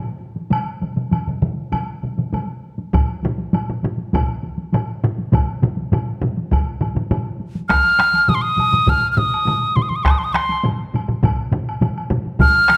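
Close, detailed miking sits inside a moderate recital hall reverb in this driving, ceremonial Japanese taiko ensemble piece, cut from a longer work, moving in straight 4/4 at 101 BPM and speeding up throughout. Two taiko layers and a woody woodblock enter at the outset, one taiko struck with hard sticks up front and the other with heavy sticks further back, and two more heavy-stick taiko layers with a small-room sound join at 2.9 seconds. At 7.7 seconds a pure, mellow piccolo steps up front with tongued notes and vibrato, playing a melody between C6 and F6.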